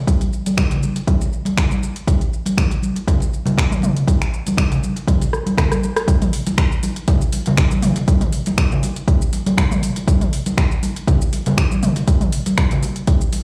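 A punchy, overdriven electronic kick sits up front in this earthy, spiritual house groove at 120 BPM with a light 16th-note swing, alongside a deep house kit of finger snaps, metallic hi-hats, rim clicks, shaker and toms and bright, vintage, band-limited congas, all cut from a longer piece, with a drum fill from 5.3 to 6.1 seconds leading into a drop that runs to the end, the whole mix heard through a big sound system in a bare room with large studio reverb.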